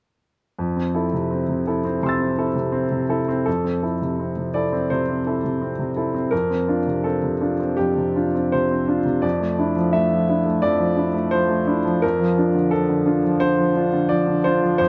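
Hopeful and peaceful, this neoclassical minimalist piano piece drifts along at 84 BPM in 4/4, its uneven, rubato beats giving it a freely breathing feel in F major. A single grand piano plays alone from 0.6 to 14.9 seconds, spanning F2 to A6, with a warm, boxy tone that sits up front. The harmony moves through Fmaj7, G7sus4/F, Dmadd9/F and Bb/F, all resting over an F in the bass. A short opening passage gives way at 3.5 seconds to a longer second section that carries the music to the end of this fragment, which is cut from a longer piece. Close, detailed microphones capture the instrument intimately, wrapped in light reverb.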